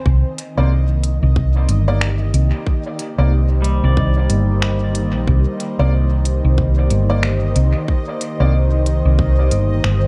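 Deep and spacious, this swung ambient dub excerpt rests on a round, hollow-body fingered electric bass and a tight, up-front electronic kick, with smooth hi-hats and finger snaps from an organic electronic kit trailing dub echo, while an airy, breathy pad holds a Cm9 chord through chorus and phaser, a resonant, bubbling sawtooth texture steps through random filter moves, a brilliant, woody upright piano drops echoing stabs, and from 3.6 to 6.9 seconds a twangy, gritty pedal steel guitar adds slide arpeggios with volume swells, all in a dark, dry mix.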